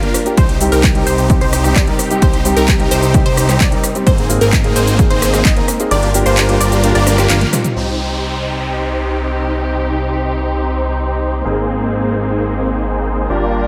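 A straight 4/4 pulse at 130 BPM drives this emotional, anthemic stretch of festival progressive house in C minor, cut from a longer piece. An overdriven house kit of handclaps, metallic hi-hats, rim click, shaker and toms runs from the start, joined at 0.4 seconds by a punchy, overdriven electronic kick up front, both re-recorded in a large room. The kick drops out at 5.9 seconds ahead of a drum fill and a band accent, and a downlifter sweeps in at 7.8 seconds as the drums fall away into the second half. Huge, bright supersaw chords carry the riff through a phaser, low-pass filter and tape echo, while a fat, nasal analog bass anchors the low end, and a lush, detuned unison pluck spins arpeggios in the background for the first half. Underneath, a dark, worn grand piano with audible action noise and a veiled, con sordino string section add intimate depth, all pumping with sidechain over Cm, Abadd9 and Gm7 in light reverb.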